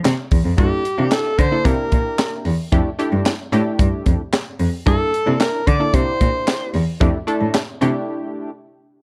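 A breathy, clear alto saxophone carries the melody from 0.6 seconds in a jazz-style solo, its scooped notes and vibrato lifted by a slapback echo in this danceable, slick early-eighties boogie funk fragment at 112 BPM. Beneath it, a single bowed cello plays the bass line with a rich, soft-attack tone, expressive vibrato and portamento, while a tight, dry acoustic drum kit with a high-tuned snare, tight kick, hi-hat and handclaps drives a straight 4/4 groove. A punchy sawtooth polysynth comp, detuned and wave-folded with a plucky filter and chorus, works through Gm69, C9 and Fmaj13 chords and rings on to 8.5 seconds into a short break, all set in a small room with a dark, warm production.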